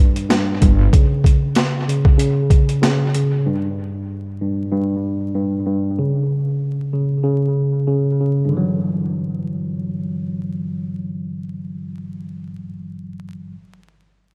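A worn, slightly out-of-tune tine electric piano with cassette-tape colour and dub echo opens this dark, tough boom-bap hip-hop excerpt at 95 BPM in E dorian, joined within the first second by a gritty, pitched-down, overdriven sampler-style drum kit with a thumpy kick and high-tuned snare that drops out at 3.3 seconds, a single woody pizzicato note on gut-string upright bass, and the piano carrying on alone, settling onto an Em9 chord at 8.5 seconds, all wrapped in an echo-heavy mix with light reverb, vinyl crackle and faint mains hum.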